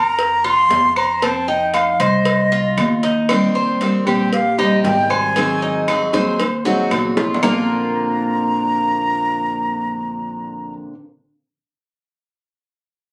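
A straight 4/4 groove at 116 BPM in Bb major drives this sunny, danceable slice of Cuban son and guajira. Soft-handed, high-tuned cowbell and bongos and woody claves sit in the background alongside ringing metal-shell agogo bells and timbales until a drum fill at 7.2 s, and all three percussion parts stop at 7.5 s. Up front, an airy concert flute with vibrato carries the melody over mellow, double-strung arpeggios from the Cuban tres and a dark pizzicato upright bass, while a bright, picked steel-string acoustic guitar joins at 3.3 s, all caught on a phone in the room with club reverb and compression.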